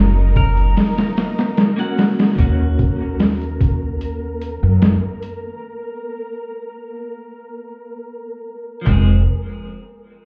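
Brooding and hypnotic, this trip hop excerpt moves at an unhurried, straight pulse, heard as if muffled through a wall with a club-like reverb around it. A woody, growly upright bass sits up front alongside a compressed, pitched-down boom bap drum kit whose thumpy kick, high-tuned snare, handclaps and hi-hat carry an overdriven grit, entering at 0.4 seconds. A clean, picked electric guitar with tremolo and tape echo threads accompaniment throughout, while a bright semi-hollow guitar plays a brief melody in the background through tape echo, stopping at 1.9 seconds. Smooth, bowed symphonic strings with light vibrato hold sustained chords through lo-fi sampler grit until 2.4 seconds, as a mellow, flickering granular texture with its own reverb hovers beneath nearly the whole passage. The harmony drifts from Gb to Ebm7, passes through a stretch where the chords drop out, then settles on Fm near the close.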